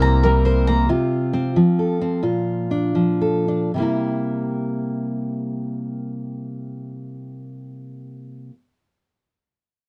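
Warm and nostalgic, this short folk excerpt in 3/4 and C mixolydian opens at 110-138 BPM with pizzicato upright bass, a mellow double-string mandolin playing arpeggios and a dark, full-bodied fingerpicked dreadnought guitar over C7, then the bass and mandolin stop at 0.9 seconds and the tempo slows until 3.7 seconds as the guitar carries on alone through F/C and Bb back to C7, its finger squeaks audible until 8.5 seconds in a dry, close 1970s-style studio sound with every instrument up front.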